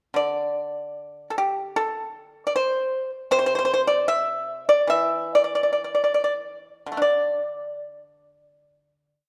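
Chinese traditional solo plucked-string music, this short, complete piece has a flowing, pastoral mood and moves in a free, rubato 2/4 at roughly 47 to 82 BPM in the D shang mode. A single pipa carries everything from 0.1 to 9.3 seconds, played with fingerpicks and sitting up front, its tone acoustic, dry and percussive. It spins an ornamented modal melody over accompaniment on its low strings, ranging from C3 up to E5. The tempo slows from 3.3 seconds, and the opening passage gives way at 7.0 seconds to a closing chord. A moderate recital-hall reverb surrounds the instrument, and the production leans dark and warm.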